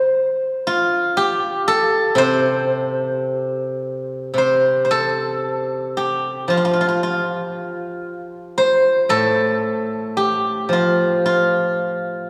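The rhythm flows freely in rubato around a slow 57 BPM in 2/4, giving this short cut from a longer Chinese traditional piece a pastoral, unhurried sway. A single steel-string zither carries the whole performance as a solo, played with fingerpicks across a range from A2 up to C5, tuned slightly above standard pitch at A4 = 441 Hz. Its tone is acoustic and silvery, with ringing notes that sit up front in the mix. The playing opens with one passage and moves into a second, longer one at 4.4 seconds, continuing until 12.3 seconds. A generous church-like reverb, with a 2.7-second decay, surrounds the zither and lets each plucked note bloom into the space.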